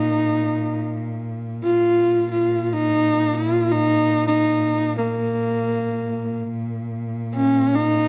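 In free time, this vast, solemn Mongolian folk passage in a Bb yu mode, tuned to A4 = 436 Hz, sets a single bowed horsehead fiddle up front, its clear, husky tone carrying the melody between Bb3 and F4 with vibrato and portamento, colored by plate reverb and analog delay. Beneath it, one bowed cello holds a rich, focused drone on Bb2 with vibrato throughout the 8.1 seconds. The production is dark and warm, placed in a small, reverberant room.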